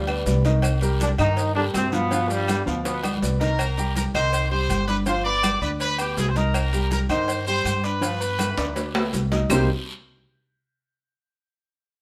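Salsa in a fiery, passionate vein, heard as a short cut from a longer piece, built on a straight 4/4 pulse over chords moving between Cm7 and G7. A bright, smooth-topped trombone section carries the melody first with light vibrato, tight and up front, until about 3.2 seconds, when a clear trumpet section takes over the tune from 3.4 seconds in a higher register. Beneath them a thumpy, dark upright bass on gut strings plays pizzicato and sits up front, while a present, polished upright piano supplies warm, woody accompaniment. The percussion is dense: ringing congas played with hard hands and ringing metal-shell timbales with agogo bells, woody claves, a raspy, saturated guiro and grainy, mellow maracas, plus very quiet, tight, high-tuned cowbell and bongos. Drum fills arrive around 2.9 and 8.4 seconds, and a moderate studio reverb gives the ensemble a lively sense of space.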